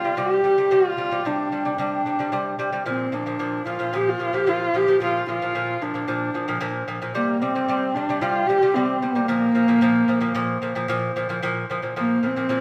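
A straight 4/4 pulse at 112 BPM carries this vast, proud passage of Mongolian folk music in Bb gong mode, where a husky, up-front horsehead fiddle sings the bowed melody with vibrato, portamento and a soft attack over delicate fingerpicked arpeggios from a double-strung, gut-string lute, the harmony moving between C5 and Bb5 before a new section arrives at 11.4 seconds, with the two players heard live together in a stone room with a wet reverb.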